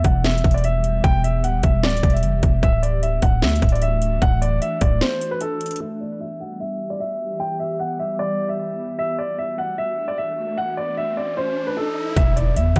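Dark and melancholic, this half-time trap excerpt in E minor at 151 BPM pairs a mellow, long-sustaining baby grand piano melody with an ethereal, detuned pad holding chords, while a growling 808 bass drops out at 5.0 seconds and an overdriven drum kit with hard-clipped kick, sharp snare and metallic hats follows at 5.8 seconds, making way for a filter sweep and rising effect before both crash back in with an impact at 12.2 seconds.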